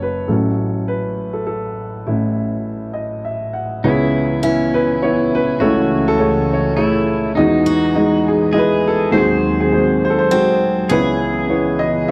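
Intimate and hopeful, this acoustic folk-pop ballad moves in a straight 3/4. A woody upright piano carries the melody from the start, sitting up front with a natural, long-sustaining tone, and it plays a short fill at 2.6 seconds before the music opens into a new section. At 3.8 seconds a twangy, clean pedal steel guitar enters with a second line, compressed and played with fingerpicks, with slide and volume swells. At the same moment a silky analog string pad arrives, holding sustained chords with a slow attack, long release and ensemble chorus. From 4.4 seconds a picked steel-string acoustic guitar adds arpeggios, with audible finger squeak and an auditorium-like body, as the harmony moves through C#m7, Amaj7/C#, Emaj7 and G#7/D#. The dry, close sound recalls a 1970s studio, and the passage is cut from a longer piece.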